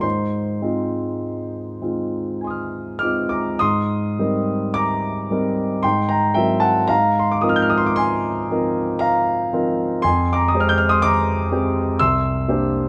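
Luminous and hazy, this impressionist classical fragment for solo piano drifts in a rubato 3/4 at roughly 49-64 BPM, centred in Ab lydian. The concert grand sits up front with a deep bass, an open tone and long sustain, spanning C2 to G6 under light reverb and a dark, warm production. It moves from Ab6 through Abmaj9, C7#11/Ab and Ab69 to Fmadd9, arriving on C9 near 12.0 seconds.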